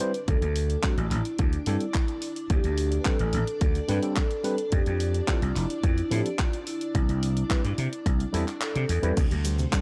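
A mellow, soft-mallet vibraphone melody with tape echo opens this sunny, feel-good nu-disco cut at 108 BPM, over a barky, overdriven tine electric piano through a combo amp, a lush string machine pad with ensemble chorus in the background, and a house kit of crash, handclaps and hi-hat, with the piano and strings pumping under the sidechain. A growly, bright slap bass and a punchy, up-front electronic kick join almost at once, carrying chords that move from D7sus4 through Fmaj7 and C. The kick drops out at 8.6 seconds, and at 9.2 seconds a soft, round pluck arpeggio and a faint cabasa slip in, all within a dry, gritty recording with transformer saturation.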